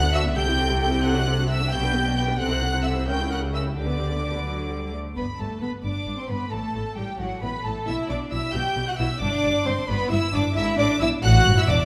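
In a straight 6/8, this quick, graceful and cheerful classical-period string orchestra passage sets a warm, lightly vibrato first violin melody over a rich second violin line, pure, floating violas, a smooth-topped cello bass and soft, deep double basses, every section bowed gently over the fingerboard in a close, intimate sound bathed in the lush reverb of a scoring stage, with the harmony turning at 5.2 seconds into a fresh section.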